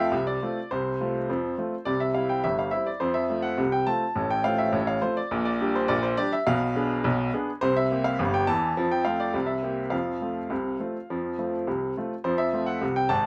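Playful and cheerful, this short solo ragtime piano excerpt moves at 104 BPM in a straight 2/4 feel, centred in F major. A clear baby grand piano carries the whole piece alone from 0.0 to 13.3 seconds, spanning G1 to A5. Its sound is intimate and natural, placed up front with long sustain and audible action noise that brings the listener close to the instrument. The harmony moves from F over C through C, F, F over A, G minor over B-flat, Bdim7 and C7 before settling on F, with a quick C7 back to F near the 9.9-second mark. A moderate studio reverb gives the piano a modest sense of room, and the recording ends as the opening section starts again at 12.2 seconds, cut from a longer piece.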